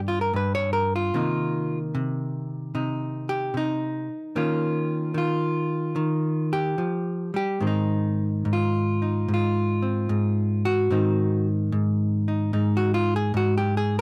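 A lone hollow-body electric jazz guitar opens on a G augmented chord, setting a swinging, warm mood for this short solo jazz passage cut from a longer piece. The guitar, picked and clean with a dark tone, sits up front in a light reverb. It moves through Cm7, Eb9 and finally Ab, and its range runs from G2 up to C#5. The time is in 4/4 with a swung eighth-note feel, yet the playing stretches freely in rubato. The guitar carries the whole 14 seconds alone, tuned slightly flat of standard pitch at A4 = 439 Hz.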